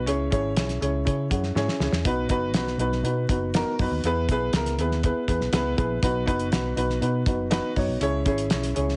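A dark, woody upright piano accompanies this joyful, uplifting stretch of uptempo 1960s-style soul at 121 BPM in B major, its slightly detuned, worn tone and audible action noise sitting up front, with a fill between 1.1 and 2.1 seconds as the chords move from C#m through B, E and back. Beneath it, a vintage muted fingered electric bass gives a round, foam-muted low end, while a cloth-damped, thuddy drum kit with a fat snare, tight kick and hi-hat sounds gritty and saturated, adding its own fill from 1.6 seconds. Light reverb and heavy, radio-style compression with a rolled-off top give this short cut from a longer piece a vintage character.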